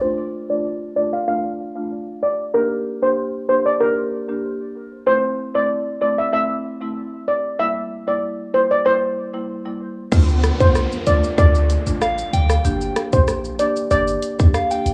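A shimmering, up-front steel pan carries the melody in this sultry, tough dancehall excerpt in D minor at 95 BPM, backed by a woody marimba under a filter sweep on a cassette-tape sound with small-room ambience, until at 10.1 seconds a deep, boomy 808-style bass, a tight electronic island pop drum kit with crash, hi-hat, rim click and shaker, and a downlifter arrive, followed at 12.0 seconds by a soft, pure FM synth bell with chorus and phaser.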